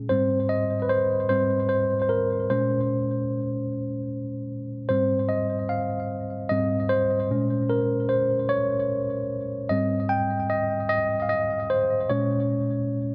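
R&B in a slow 6/8 at 50 BPM, this tender, warm fragment from a longer piece sits in Ab major and runs about 13 seconds. A lone tine electric piano carries everything, playing solo from start to finish across a range from Ab2 to G5. Its tone is worn and slightly out of tune, lightly overdriven and heard as if through built-in speakers, with a touch of delay trailing its notes. The harmony rocks gently between Abmaj7 and Bb minor colors, moving through Bbm9 and Bbm7 roughly every two and a half seconds. Placed up front in a light reverb, the piano feels intimate and close, like a private moment at the keys.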